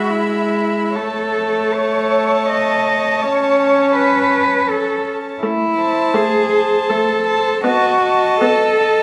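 Bathed in a wet recital-hall reverb, this tender, lyrical excerpt from a slow romantic string quartet movement sways in 3/4 with a rubato feel, as a pure, floating violin carries the melody above a second violin's rich, airy line with light vibrato, a distant viola's accompaniment, and a dark cello, intimate and up front with vibrato, holding the bass, all four bowed sul tasto with soft attacks.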